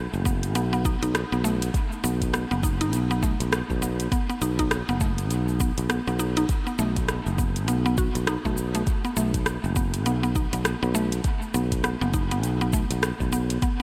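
Earthy and mystical, this organic downtempo excerpt drifts over a swung sixteenth-note feel in 4/4, resting on a single suspended chord throughout. A sustaining fretless electric bass opens at 0.0 seconds, bright, growly and up front in a low register. An afro-pop drum kit follows at 0.1 seconds with cabasa, metallic hi-hat and rim click, its produced electronic sound roughened by overdrive. From 0.3 seconds a deep, overdriven electronic kick drum joins, along with a woody, round, mallet-like FM synth pluck that plays arpeggios with a fast attack, short decay and a noise layer, thickened by chorus and trailed by a diffuse ambient delay. The whole dreamy mix is soaked in a huge ambient reverb with a long 8.3-second tail, giving the piece, which is cut from a longer work, a hazy, spacious air.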